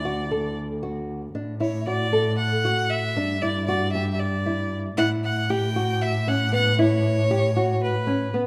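Playful and shimmering, this short 7/8 contemporary chamber excerpt sets a clear, intense bowed violin melody with vibrato over small, dark fingerpicked nylon-string guitar arpeggios with audible finger squeak and a veiled, con sordino cello bass line held up front, all bathed in a moderate scoring-stage reverb, with the passage shifting into a new section at 5.0 seconds.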